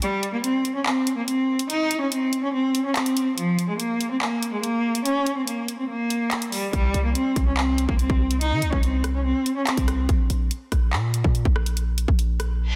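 Drill hip hop at 143 BPM in a cold, tense half-time feel in C phrygian, with a single rich, bowed cello carrying the melody in a smooth, even line with vibrato, set at a distance and touched by digital delay. The electronic drum kit sits up front with a hard-clipped kick, bright hi-hats, handclaps and rim clicks; the kick drops out at 5.9 seconds before a punchy, heavy 808-style bass arrives at 6.7 seconds with a fast attack and a noise layer. A brief reverse cymbal closes this section of a longer piece at 12.7 seconds, all within a dense, heavily limited modern mix with light reverb and digital ambience.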